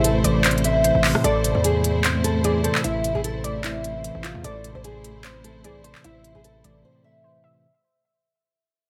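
A brooding, hard-hitting trap cut opens with everything at once: a bright, fingerpicked nylon-string guitar carries the melody, its fresh strings catching an occasional finger squeak and trailing a digital delay. Above it, a warbling, lo-fi pluck with a nasal edge and a filter sweep traces a second line through chorus and its own delay, while a mellow, clean tine electric piano holds down the accompaniment beneath. A lush, bowed string section adds sustained chords with vibrato and a smooth top. The half-time groove comes from a crisp, up-front electronic trap kit of hi-hats, handclaps and rim clicks, anchored by a heavy, saturated 808-style bass with a fast attack and an aggressive, distorted growl. The drums drop out at 6.7 seconds and the bass at 6.8 seconds, leaving the guitar, pluck, keys and strings in a brief break as the whole passage fades, bathed in light reverb.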